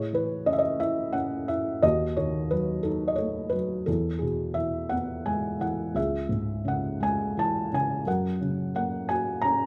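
A hushed, intimate sound opens this short classical fragment, a felt-muted upright piano heard up front in a light reverb. The thick felt gives the instrument a dark, mellow voice with short sustain and a vintage character, its soft tone lending the playing a close, private quality. Alone for the full 9.7 seconds, the piano moves in a rubato 6/8 at about 58 beats per minute, counted in dotted quarters, ranging from C#2 up to A#5. In C# minor, the harmony passes from Amaj7 through D#dim and E to C#m, arriving on F# at 8.1 seconds as the clip breaks off. The mood is melancholic and wistful, a lyrical moment lifted from a longer piece.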